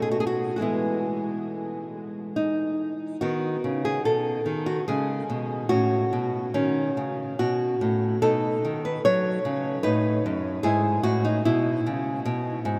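Radiant and dance-like, this short cut from a longer classical, baroque-style dance in E major sways in 3/4 at a rubato 67-75 BPM, as a solo nylon-string guitar, fingerpicked with an acoustic, small, up-front tone spanning F#2 to C#5, moves through chords from B7 at the start to E/G# at 10.7 seconds, its notes blooming into a huge, wet ambient reverb that makes the room sound vast and echoing.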